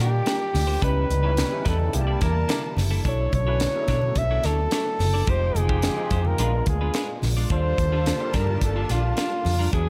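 A warm flugelhorn with light vibrato and scooped notes carries the melody up front over a polished 1980s jazz-funk pop groove at 108 BPM, its nocturnal, bittersweet mood shaped by lush chords moving from D#maj7 through Bm11 and A#7b9 to a closing D#maj9#11. A round, punchy, foam-muted fingered bass and a tight, dry drum kit with a high-tuned snare and gated reverb sit prominently, while a barky tine electric piano with ensemble chorus comps alongside a clean, compressed guitar riff with subtle chorus. Dark bowed strings hold sustained chords in the background, and very quiet, distant low-tuned congas enter at 0.5 seconds in this fragment of a longer piece.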